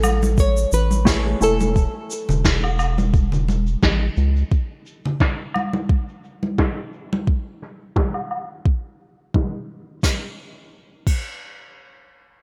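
A gently swung 87 BPM groove in 4/4 opens this blissful sunset chillout passage in A major, cut from a longer piece and resting on an Amaj7 chord before giving way to unaccompanied rhythm at 4.5 seconds. A soft, up-front electronic kick enters at 0.4 seconds beneath a brushed acoustic kit with dark, filtered cymbals, a medium-tuned snare, shaker, woodblock and gated reverb, the kit carried through a filter sweep until 10.0 seconds. Bright, band-limited vintage congas add color until 7.2 seconds, while a round, deep analog bass with a nasal edge anchors the low end until 4.4 seconds. A small, fingerpicked nylon-string guitar carries the brief melody with chorus and delay, beside a dark, compressed hollow-body electric guitar roughened by 12-bit sampler grit and swept through a low-pass filter. The sound is bright and 1980s-flavored digital, with light reverb and a small-room ambience.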